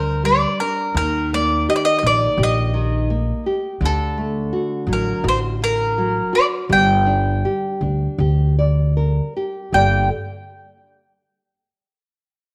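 Passionate and mournful, this fado-style ballad moves at 83 BPM in 4/4 with a rubato feel, set in G harmonic minor and tuned to A4 = 436 Hz. A bright, picked mandolin carries the melody up front, its doubled strings ringing between A4 and G5. Beneath it, a fingerpicked nylon-string guitar supplies full-bodied, deep classical accompaniment, while a dark, thumpy upright bass plays pizzicato on gut strings, woody and up front in the low register. The harmony passes from G5 through Eb, D and Gm before opening onto Gmadd9 at 9.7 seconds, and the three instruments play together until 10.1 seconds. A moderate echo-chamber reverb with small room ambience surrounds the ensemble in this passage cut from a longer piece.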